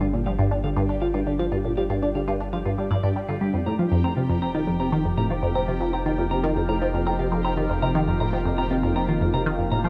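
Cosmic and hypnotic, this short cut from a longer piece of ambient, sequencer-driven space music rides a squelchy, resonant blip pluck riff up front with phaser and tape echo, over a round, deep analog bass, while a lush, warbling unison pad with chorus, a clean picked electric guitar playing echoing arpeggios, and a bubbling stepped-filter texture all fade in across a Gm7 to F7sus4 change, bathed in plate reverb and captured on cassette tape.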